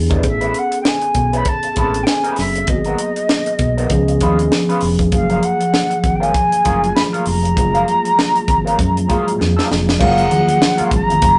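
A breathy concert flute with vibrato and a soft attack carries the melody over mellow tine electric piano chords, a round, dark fingered bass, a slightly broken-up wah guitar riff and a tight funk kit with a high-tuned snare in this smooth, lush 1970s-style soul excerpt in F# major at 98 BPM with a 16th-note swing, moving through Amaj9, G#m9, C#7 and F#maj9, where a drum fill at 9.4 s leads into a new section at 10.0 s as low-tuned, ringing congas join, all in a rough rehearsal-room recording with saturated tone and a wet studio reverb.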